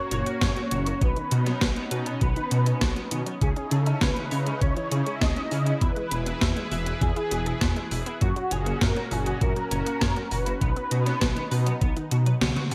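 Opening at 0.0 seconds on a thick, bold, nasal unison lead with ensemble chorus and tape echo over an airy detuned pad that pumps against the beat and a round, wave-folded analog pluck arpeggio in the background, this nocturnal, driving synthwave excerpt at 100 BPM in 4/4 soon adds a saturated detuned saw bass, a clean, picked semi-hollow electric guitar riff, an up-front gated 80s digital drum machine with overdriven gated-reverb snare, hi-hat and toms, and a knocking electronic kick, all cycling through F#, Badd9, C#madd9 and E before the kick drops out at 12.4 seconds for a drum fill and band accent.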